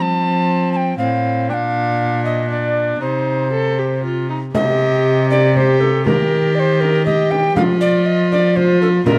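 In a dark stone room with moderate reverb, this courtly, solemn excerpt of a renaissance-style consort dance in 3/4 at 119 BPM in C dorian sets an airy, wooden alto recorder with crisp chiff and vibrato up front over a single bowed viola of gut-string tone and a rich, reedy period-style cello bass, while a small, bright frame drum joins distantly in the background at 4.5 seconds.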